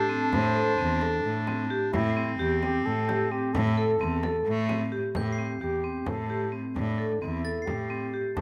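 A breathy, mellow flugelhorn carries the melody from the very start, in a jazz style with light vibrato, while a bright, classical-style clarinet sits up front with a second line and a clear, focused cello bows the bass. A bell-like glockenspiel struck with brass mallets sparkles for just an instant at the opening, and hard-mallet vibraphone arpeggios soon ring out with a metallic, mid-forward shimmer and motor vibrato. This pensive, restless piece of contemporary chamber music moves in an uneven 7/8 with a straight feel, anchored on a minor seventh harmony, as a frame drum played with hard hands adds a close, dry pulse in the background. The clarinet falls away at 4.9 seconds, and from 5.2 seconds a second section begins with the glockenspiel returning softly behind the ensemble. Close, detailed microphones and light reverb keep each instrument distinct in this short extract from a longer work.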